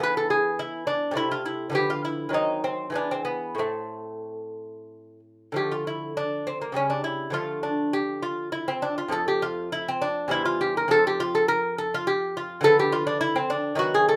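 A solo lute, fingerpicked on gut strings, opens this solemn, introspective baroque-style dance in 3/4, moving with a rubato pulse between 89 and 107 BPM. The delicate double strings, some of them octave-doubled, sit up front in a moderate studio reverb, spanning E2 to B4. The harmony settles in A minor before shifting to D minor at 5.6 s, and this short excerpt runs to 14.2 s.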